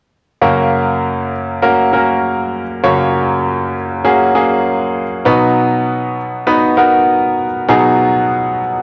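A straight 4/4 pulse at 99 BPM carries this uplifting, hopeful pop fragment in F# major, cut from a longer piece, where a brilliant, up-front grand piano with short sustain plays accompaniment from F#2 to C#5 between 0.4 and 8.8 seconds, moving from an F# chord to B at 5.3 seconds, all set in moderate spring reverb and small-room ambience as a home recording on cassette.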